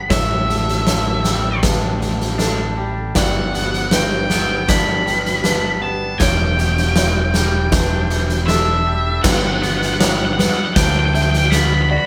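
A dark, fuzz-distorted lead guitar sings a soaring melody from the opening moment of this euphoric post-rock excerpt, over a growling, overdriven fingered bass and a huge arena drum kit with a punchy kick and fat snare up front, while a clean, twangy electric guitar and a felt-muted upright piano with audible action noise play arpeggios in the background alongside a very quiet, hollow, flute-like pad, the whole band sounding live together in a moderate stone room.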